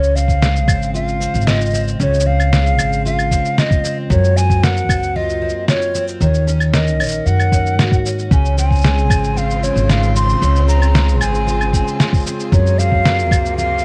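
A straight 4/4 pulse at 114 BPM anchors this pastoral folktronica excerpt in Db major, built on compressed sampler-style cabasa, claves and a fat, up-front snare, joined at 0.3 seconds by a muffled, pitched-down electronic kick that thumps beneath them, both drum parts set in studio reverb. Beneath them, a pizzicato upright bass with gut strings gives a woody, dark low end, while a fingerpicked twelve-string jumbo acoustic guitar spins full-bodied, octave-doubled arpeggios with a shimmering edge. Over this, a close-miked silver concert flute carries the melody in a pure, hollow tone with vibrato and tongued notes, bathed in plate reverb. At 8.3 seconds a bowed string quartet, one player per line, enters quietly with rich, focused sustained chords under its own plate reverb. The harmony drifts through Dbmaj7, Gbmaj7#11 and Ebm7 before settling on Gbmaj9#11, and a light reverb with a loud layer of vinyl crackle lends the whole a worn, homespun glow.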